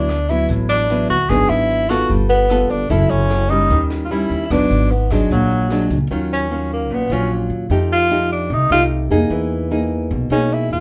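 A straight, even bossa nova pulse in four opens this wistful, melancholic fragment of a longer piece, carried by a jazz brush drum kit of hi-hat, rim click and a boomy kick that sits distant and roomy in the studio space. The nylon-string guitar is fingerpicked up front in a classical manner, its old strings giving a dark, woody accompaniment, while the pizzicato upright bass anchors the low end with a woody, warm, steel-strung tone. Over them, a vintage-sounding tenor saxophone sings the melody up front in a jazz style, colored by a gentle vibrato. The drums drop out at 6.0 s, and from 6.1 s the saxophone moves into a solo over guitar and bass as the harmony shifts into E-flat minor. A moderate studio reverb lends the whole a soft, intimate glow.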